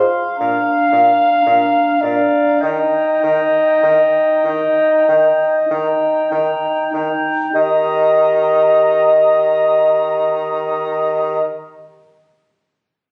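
Tender and serene, this excerpt from a slow romantic classical movement for wind quintet in Eb major drifts in rubato 4/4 at 47-58 BPM, easing into a slowdown across the first 7.5 seconds as the harmony moves from Bb to Eb, with a hollow, pure concert flute carrying the melody high above a clear, distant oboe second line, a mellow, smooth-topped French horn and an up-front warm clarinet filling the accompaniment, and a clear bassoon anchoring the bass, all heard through a phone recording in a reverberant recital hall with studio ambience and compression.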